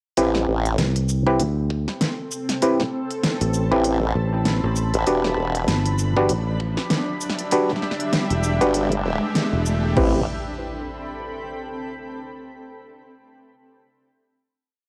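Glitch hop in A dorian at 98 BPM with a swung sixteenth feel, playful and gritty: tape-softened drums with a knocking kick, fat snare, crisp hats, shaker and crash drive a swung, edited beat, while a sawtooth formant-sweep wobble bass with chorus and a growly fingered electric bass sit up front in the low end, muted clav stabs land syncopated rootless chords through a low-pass filter, pumping sidechain and analog delay, a blurred granular cloud pad drifts in at 2.0 s, and a background riser from 3.0 s lifts the build over Am9 and Em7 into a final Am9 chord at 10.0 s, all captured as a lightly reverberant home cassette recording.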